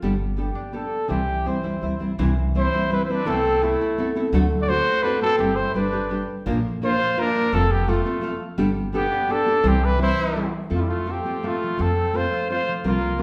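A mellow trumpet carries the melody up front from 0.4 seconds, its classical-style tone punchy with a light vibrato and a smooth top, giving this short festive, romantic mariachi passage in waltz time its lyrical voice. At 2.6 seconds a clear trumpet joins with a quieter second line set below it. Underneath, a warm nylon-string guitar is fingerpicked in classical fashion and sits up front, while a concert harp adds ringing fingerpicked arpeggios a little further back. A woody, dark upright bass, plucked on steel strings, anchors the low end. The harmony moves through chords such as Gadd9, C, D7, Bb and F, and the music turns to a new section on F at 10.7 seconds. The band plays live in one room, bathed in a generous, wet studio reverb.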